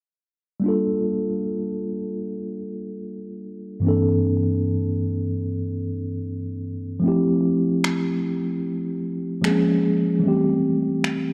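Contemporary R&B at a slow 75 BPM in G dorian, this longing, late-night excerpt puts a mellow, clean tine electric piano up front, heard through its built-in speakers, voicing Gm9, C13/G, Fmaj9, Bbm7 and Am7 chords from 0.6 seconds, while electronic finger snaps join at 7.8 seconds, all set in a lush hall reverb with a dark production.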